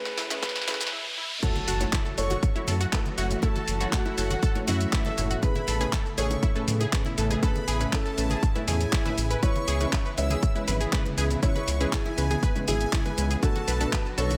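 This expansive, emotional progressive house piece in F# minor at 120 BPM opens on a brief build-up, where a riser, a drum fill and a filter sweep on the pluck rise beneath a dark, boxy baby grand piano melody with audible action noise, distant bowed strings with woody vibrato, bright detuned pluck stabs and mellow, wave-folded pluck arpeggios. An overdriven deep house kit of snare, handclaps, hi-hat, shaker and crash enters almost at once, and a punchy, up-front electronic kick joins it at 0.4 seconds. The drop lands at 1.4 seconds with an impact, bringing in a round, deep analog bass, an airy supersaw second line and very quiet, saturated bongos and congas over chords moving from F#m7 through Amaj9 and C#m7 to Bm7, with the melodic parts pumping from sidechain compression and the piano, plucks and supersaw trailing tape echo inside a digital ambience.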